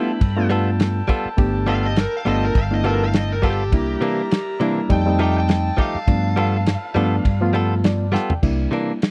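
An overdriven slide guitar solo opens this laid-back, gritty straight-eighth soul blues excerpt at 102 BPM, over G9, C9 and F9 chords carried by reedy electric piano with spring reverb, tight mellow horn chords doubled in octaves and bright, compressed clean guitar stabs, while a round hollow-body bass and a dark, dry soul drum kit join at 0.2 s, with the electric piano adding a fill from 7.5 s and the drums a fill at 8.1 s, all in a close, 1970s-style small-room sound.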